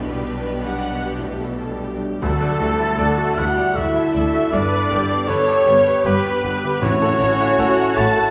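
Heard from further back in a wet recital hall, this hopeful, moving cinematic film-score fragment in D major unfolds at a rubato 78 BPM in 3/4, with a very quiet, smooth violin section carrying the melody beneath an intense, lush second violin line, a brilliant grand piano with audible action noise in the background, rich vibrato violas, ringing thumb-plucked harp arpeggios, and a clear double bass section under focused cellos, until a pure silver flute, a soft-attack oboe, a tight, mellow French horn section and very quiet, articulate hard-mallet timpani join at 2.2 s.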